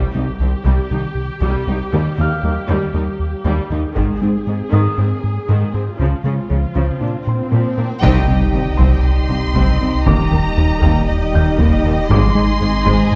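In straight 4/4 at 118 BPM, this relentless, futuristic stretch of hybrid orchestral and electronic film score in C minor, tuned to A4 = 436 Hz, drives forward on a fat, saturated analog bass riff built from detuned sawtooth and square waves with a moving notch. From the opening, a very quiet, crystalline wavetable pluck spins chorused arpeggios, while a viola section adds expressive accompaniment with portamento and a vintage grand piano, treated with delay, glints high in the background; a smooth cello section joins at 0.2 seconds to reinforce the low end. Taiko drums with heavy sticks punch briefly through the build-up at 4.0 seconds, and an electronic swell and impact rises from 6.6 seconds to mark the arrival of the full ensemble at 8.0 seconds. There a focused, lush violin section takes the melody over a more distant second violin line, mellow French horns hold sustained chords, the taiko return, and a deep sine sub bass with a pitch-drop attack joins a woody double bass section beneath. 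The harmony moves through Cm, Eb, Ab, Db and Bb before cycling back to Cm, all set in a moderate scoring-stage reverb with a dark, tape-saturated production, and the passage is cut from a longer piece.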